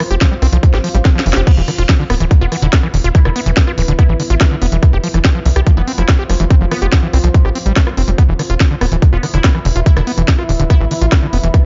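Intense and alien, this psychedelic trance excerpt at 143 BPM drives forward on a tight, up-front electronic kick and a punchy sawtooth sequencer bass, while a squelchy, distorted acid bass riff pumps through tape echo over a techno kit of cracking snare, smooth hats, rim clicks and crash with a drum fill at 1.1 seconds, a deep, moody chorused pad hovering in the background, and a juicy resonant blip pluck entering at 2.4 seconds through phaser and dub echo, all in a dark, dry production.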